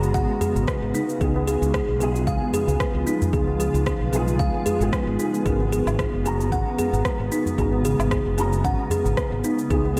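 Hypnotic and earthy, this organic downtempo piece at 113 BPM in G# dorian moves between G#m11 and C#7 as a woody, hollow kalimba plays tape-echoed arpeggios over a soft, felt-muted upright piano with audible action noise, chorus and tape echo, a blurred, evolving granular cloud pad with vintage 12-bit grit, and a round, dark fretless electric bass up front, with the pad, piano and bass pumping to the sidechain while a punchy overdriven electronic kick, overdriven electronic cabasa, rim click and woodblock, and a low-tuned, dry tabla in the background carry a swung 4/4 pulse through a dreamy mix soaked in lush hall reverb.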